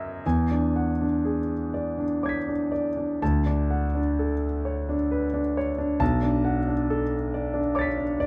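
A clear, intimate grand piano opens this excerpt from a longer impressionist solo piece on an E9 chord, moving to Dmaj7 at 3.2 seconds and Bm7 at 6.0 seconds in D major. The playing is rubato in a slow 6/8, around 40-47 BPM counted in dotted quarters, spanning B1 to B6, with the instrument placed up front and its action noise audible. Light reverb and a dark production give the hazy, luminous mood a natural feel.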